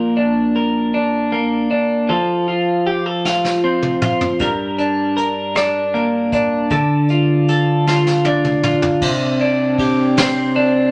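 Dramatic and melancholic, this short slice of a longer six-eight pop ballad moves with a slow, straight sway. A clean, compressed twelve-string electric guitar sits up front from the start, picking a warm accompaniment through Bb, F, Gm and Dm. A vintage brush drum kit joins at 3.3 seconds, its dark cymbals, tight kick and medium-tuned snare sitting further back in a small, pumping room with a rolled-off top, and it plays a brushed fill at 7.9 seconds. At 9.0 seconds the music turns to a Csus2 chord as a mellow, close-miked French horn section enters on a single note, played in an ensemble classical style. A wet studio reverb gives the whole a soft, spacious glow.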